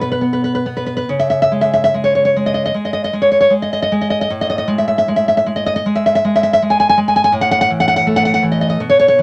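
Nostalgic and romantic, this short excerpt from a longer piece features a solo classical nylon-string guitar in E major, full-bodied and up front with audible finger squeak, fingerpicked in a rubato 4/4 at about 70-84 BPM through chords of C#5, Eadd11/A and A5, set in a moderate studio reverb.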